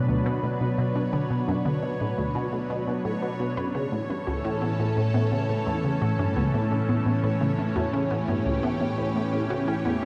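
A thick, bright unison pad with chorus and phaser sits up front, holding sustained chords that move from Bm to A at 3.7 seconds in this hypnotic, expansive slice of ambient, sequencer-driven space music at 86 BPM. Beneath it, a squelchy, ring-modulated blip pluck with phaser and delay plays a low riff, while a punchy, wave-folded unison pluck spins delayed arpeggios in the background. A bubbling texture of random filter steps with chorus and its own reverb hovers high on C#5, all set in a huge, dark reverb space with a 7.7-second tail.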